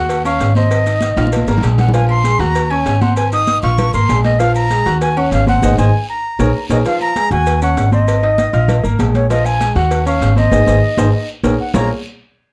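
A breathy, reedy flute carries the melody over a clear concert grand piano with audible action noise and a woody, growly pizzicato upright bass up front, while background congas, tight cowbell and bongos, ringing agogo bells and timbales, grainy maracas and a raspy guiro that drops out between 6.8 and 9.3 seconds drive this danceable salsa excerpt, punctuated by drum fills and band accents under light reverb in a dark production.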